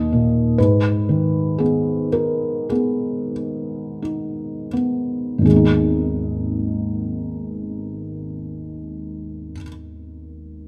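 Rubato phrasing in 4/4 drifts between 40 and 64 BPM, and the pulse slows through the first 5.5 seconds before a new passage begins. This is a short cut from a longer piece of lyrical classical solo piano in G# minor, tuned to A4 = 441 Hz, with a wistful, melancholic mood. The only instrument is a felt-muted upright piano, playing from 0.0 to 10.7 seconds and ranging from G#1 up to D#5. It opens on a D#5 before settling onto a G# minor chord at 0.6 seconds. Its tone is dark, mellow and natural, softened by thick felt, with audible action noise, and the playing feels intimate and up front. It is captured with close, detailed microphones and light reverb.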